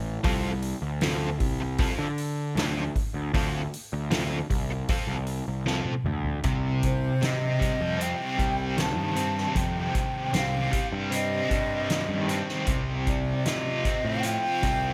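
A round, dark fuzz bass opens this hypnotic, trippy psychedelic rock cut in C dorian at 77 BPM, quickly joined by a double-tracked, overdriven guitar riff shimmering with tremolo and a distant, roomy soft-mallet kit with a punchy kick and fat snare. A drum fill at 5.7 seconds leads into a new section over C minor, where a breathy, hollow jazz flute enters at 6.8 seconds with vibrato, a soft attack and a haze of tape echo. The harmony moves from F over C to C minor and finally to Fadd9 over C, all set in a light studio reverb.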